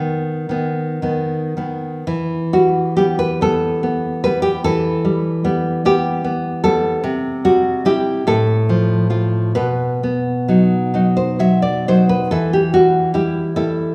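Set in a rubato 6/8, this wistful, passionate romantic excerpt for solo classical guitar features a dark, deep nylon-string instrument, fingerpicked and up front across a range from A2 to E5, as the harmony moves from B through Em, C and F/A back to B and settles on Em at 12.3 seconds, the guitar bathed in the wet reverb of a recital hall.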